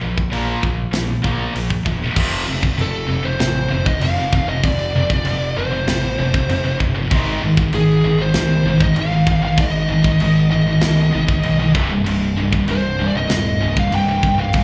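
Heavy metal at 97 BPM with an epic, relentless mood, captured live through a club PA: two bright, high-gain rhythm guitars (one very quiet, one distorted and set back) churn out riffs alongside a growling overdriven bass and a tight, up-front drum kit with bright cymbals, while a dark, smooth overdriven lead guitar with slapback echo and delay carries the melody from 2.8 seconds over chords moving from Bb5 through F5 and Ab5 to Cm.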